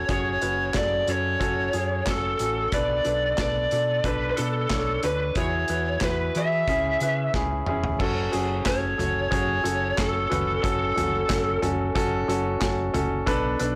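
A straight, steady 4/4 pulse from a loose acoustic indie drum kit drives this bittersweet piano-driven pop excerpt. The kit has a pumping small-room sound with dark cymbals, a medium-tuned snare, a tight kick, hi-hat, toms and handclaps, and it plays a fill from 7.3 seconds into the second section at 8.0 seconds. Underneath, a fingered electric bass sounds round, punchy and amped, while a clear, polished baby grand piano sits up front, carrying the accompaniment through a minor-key progression that moves from F#m through Bm7, Eadd9 and C#m before returning home. A picked electric lead guitar through a small cranked amp carries the melody with a lo-fi, overdriven edge and plate reverb, and it drops out at 11.6 seconds. The piano shares that plate reverb, and the whole mix sits in a moderate studio space with a blown-out, overdriven recording character that gives the driving mood a raw bite.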